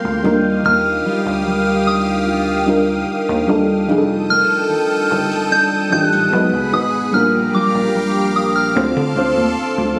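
Longing and moody, this slow R&B excerpt moves at 74 BPM in a straight 4/4, with a soft, pure synth bell carrying the high melody through chorus, phaser and digital delay until it drops out at 9.7 seconds. Beneath it, a round FM electric piano plays the accompaniment, a thick, detuned unison pad holds bright sustained chords, a fingerpicked nylon-string guitar adds full-bodied arpeggios in the background, and a rubbery, hollow square bass gives a bouncy, resonant low end. The harmony drifts from Ebmaj9 through F13, B6 and Bb6 to Dm7, all heard through light reverb with a phone-in-the-room quality and a compressed finish.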